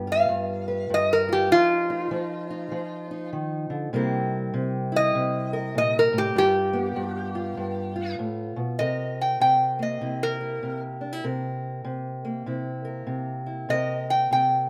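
A boxy, dark parlour acoustic guitar fingerpicks a swung accompaniment from the start, and a bright, nasal, metallic resonator slide guitar, played with fingerpicks and a steel bar, joins up front at 0.1 s for a soulful solo through 8.8 s before a new section moves to C7, in this rollicking acoustic country blues excerpt at 99 BPM in 4/4, with light reverb and the rough feel of a home demo.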